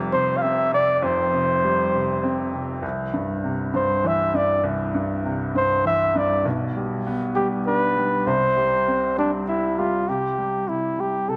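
A swaying 6/8 pulse at 66 BPM (dotted quarters) carries this romantic pop excerpt in C major, moving through Fsus2, C and G/B before settling on C5 at 10.1 s. A baby grand piano with an open tone and long sustain provides the accompaniment up front. Above it, a mellow, breathy flugelhorn takes the solo melody in a jazz style with light vibrato, close-miked and equally forward, both set in the lush reverb of a scoring stage.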